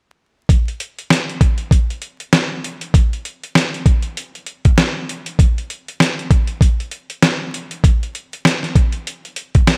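A dusty, sampler-style soul drum kit carries this short hip hop cut from 0.5 to 9.8 seconds, its thumpy kick, fat snare and hi-hat sitting up front with a gritty, compressed edge. The 4/4 groove has a loose sixteenth-note swing that feels both tough and reflective. Light reverb and a bed of vinyl crackle give the recording a worn, lived-in character.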